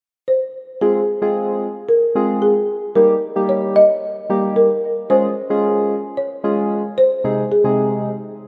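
A folk marimba played with soft mallets opens this bittersweet yet energetic pop fragment at 0.3 s, carrying a woody, rustic melody up front with a dub echo trailing behind it. Soft electric-piano-like synth keys join at 0.8 s with a round, mellow, chorused accompaniment and a wave-folded tone shaped by a filter sweep, moving through Fm, Eb, Db and Ab/C. A lush hall reverb surrounds the rough home-demo mix, which is cut from a longer piece.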